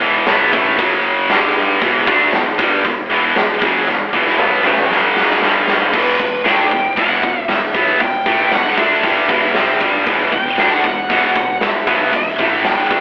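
Dark and relentless, this 13-second heavy metal excerpt drives at 116 BPM in straight 4/4 in E minor, with two bright, high-gain distorted guitars hammering out riffs over E5, F#5 and G5 power chords and Em. One guitar sits up front, the other in the background, beside a growling, overdriven picked bass, while a punchy, up-front acoustic drum kit with crash, hi-hat, snare and toms enters at 0.3 seconds and rolls through a fill from 3.9 seconds. At 5.9 seconds a dark, high-gain lead guitar takes up the melody, all heard through a rough rehearsal-room sound with a small room's reverb and a thin, telephone-like tone.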